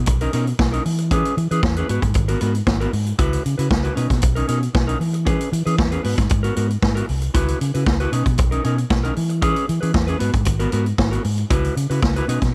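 A punchy, mid-forward vintage drum kit with a medium-tuned snare and rolled-off top sits up front in this glamorous, danceable disco excerpt at 116 BPM in C# dorian, alongside a round, amped fingered electric bass and a dark, clean electric guitar cycling through Bmaj9, E6, G#m9 and C#m7 chords in a small, lightly reverberant room.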